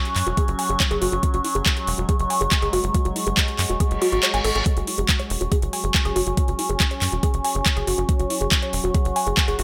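Intense and driving, this psychedelic trance excerpt at 140 BPM in 4/4, tuned to A4 = 439 Hz over an F#5 chord, layers a resonant overtone-sweeping drone and a warbly, lo-fi tape-like pad, both chorused and pumping, beneath an overdriven, up-front garage kit of handclaps and metallic hats, a knocking overdriven electronic kick, a tight, punchy sawtooth sequencer bass, and a dark, woody wave-folded pluck riff with cassette-tape colour and delay, while a filter sweep runs across the synth line throughout and a reverse cymbal sounds at 4.0 s as the kick briefly drops out at 4.2 s.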